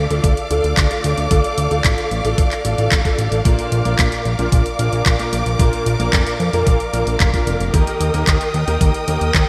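Italo disco with a sunny, danceable mood, this short cut from a longer piece moves through Dm, Bb and Eb as dark, lush bowed strings with vibrato hold sustained chords over a fat, tube-saturated analog bass with a quick, plucky attack. A clear concert grand piano plays stabs through ensemble chorus and digital delay, while a house drum kit adds layered handclaps and warm, tape-warmed hi-hats and a thumpy electronic kick sits prominently in the mix. The whole is bright, 1980s-style digital production bathed in a moderate hall reverb.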